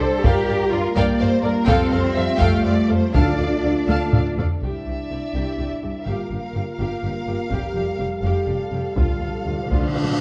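A close, dry taiko ensemble struck with hard sticks drives this dark, epic orchestral film-score excerpt in D minor at 83 BPM in 6/8, beneath lush bowed strings where warm, focused violins carry the melody over a softer background second violin line, clear violas, expressive close cellos and rich, distant double basses, while mellow French horns sustain chords through a Gm7–Fadd9–Dm–Cadd9 progression. Hard-mallet timpani enter at 3.1 seconds, a drum fill follows at 3.9 seconds, the timpani return for a fill at 9.0 seconds, and a huge, bright cymbal swell rises from 9.6 seconds to close the excerpt, all heard in a moderate recital hall with the worn, warbly pitch drift of old cassette tape.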